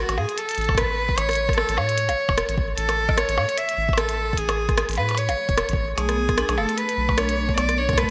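Glitchy and playful, this IDM excerpt moves at 150 BPM in 4/4 with a light swing on the sixteenths, set in A major. A close, intimate cello carries the melody from the start, bowed softly over the fingerboard by one player with light vibrato and an airy tone, touched by digital delay. Beneath it, a round, dark analog bass with a nasal edge and tube saturation holds the low end, while an up-front glitchy kit of clicky hats, percussion blips and rim clicks sits in gated reverb, joined at 0.7 s by a deep electronic kick. At 6.0 s, as the harmony moves from A to Bm13/F#, a metallic, ringing vibraphone with fast motor vibrato enters with arpeggios, roughened by 12-bit sampler grit and digital delay. The whole is framed by a lush hall ambience and a bright 1980s-style digital production, and it is cut from a longer piece.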